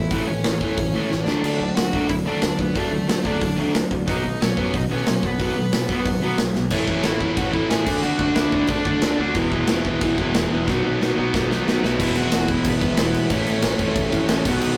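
A bluesy, distorted lead guitar leads this upbeat, energetic punk rock excerpt at 182 BPM in E major, over two picked overdriven rhythm guitars (one crunchy and set back, the other dark and compressed) and a woody pizzicato upright bass deep in the background. A big, punchy acoustic drum kit sits up front with bright cymbals and a medium-tuned snare, throwing in fills around 1.1 s and again from 10.7 s. A double-tracked, biting third guitar joins at 6.7 s, and the whole rough rehearsal-room take rings in a moderate stone-room reverb.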